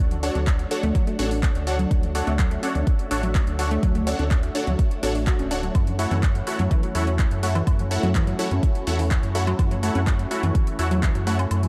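A filtered supersaw swell opens this emotional, expansive progressive house excerpt, its evolving, detuned chords pumping under a filter sweep alongside a round, deep analog bass with tube saturation, as the harmony moves from Dmaj7 to F#m7 at 5.8 seconds. A lush, wave-folded unison pluck plays arpeggios through dub echo, while a punchy supersaw stab adds phased chord hits, both pumping with the sidechain. An overdriven, up-front kick arrives at 0.5 seconds and drops out at 11.5, and it sits over a layered dance kit of handclaps, hi-hat and woodblock and very quiet, dry congas, all within a dark production with light reverb.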